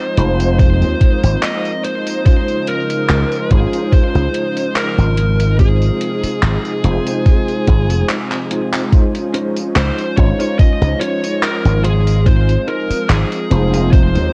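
Vaporwave with a woozy, faded mood, this short cut from a longer piece moves in a lightly swung 4/4 beneath a dark, cassette-tinged production. A distorted, high-gain lead guitar carries the melody through tape echo. A mellow tine electric piano with ensemble chorus supplies the accompaniment, and a lush, detuned unison pad with 12-bit sampler grit holds sustained chords in the background. Up front, a growly, punchy slap bass with an envelope filter and tube saturation sits beside a thumpy electronic kick, while a gated 80s drum machine adds handclaps, hi-hat and tambourine through gated reverb, both re-recorded in a small room. A drum fill at 8.3 seconds leads into the second section, where a clean, picked electric guitar enters at 9.3 seconds with a compressed riff, subtle chorus and analog delay, tucked low in the mix.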